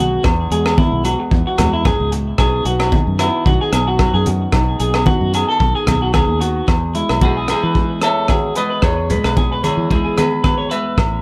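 A bright, twangy electric guitar through a small old amp stands out in this sunny, danceable highlife guitar band excerpt, picking slightly broken-up, lo-fi arpeggios up front with tape echo. Beneath it, a dark, thumb-plucked nylon-string guitar with fresh strings supplies accompaniment, while a round, foam-muted fingered electric bass anchors the harmony as it moves from Eadd9 to B and back in E major. A crunchy breakbeat drum kit sits forward in the mix with a punchy kick, rim click and hi-hat, its gritty, saturated sound rolled off at the top, while low-tuned, compressed congas with thin skins sit in the background alongside ringing, vintage agogo bells. At 7.2 seconds a clean, hollow-body semi-hollow electric guitar enters with a prominent picked melody, also touched by tape echo. The groove runs at 112 BPM in 4/4 with a light swing on the sixteenths, and light reverb surrounds the band.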